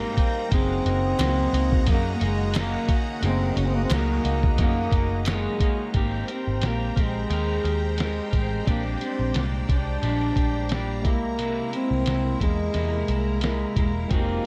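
A lightly reverberant, lo-fi mix opens this nostalgic, sunny slice of indie and bedroom pop at 88 BPM with a gentle 16th-note swing, built on a muffled, thumpy sampler-style drum kit with a fat snare and a dark, foam-muted picked electric bass, both up front. A mellow French horn carries the solo melody with a soft attack and smooth top, bathed in lush chorus, plate reverb and digital delay, while a slightly broken-up, warbly electric guitar, round wave-folded synth keys in the background and a shimmering, bright string-machine violin pad fill out the harmony, moving from Abmaj7 to a richer Abmaj9, Bb13 and C7b13 passage from 5.9 s. A crisp, saturated group handclap sits softly in the background from 1.2 to 5.4 s.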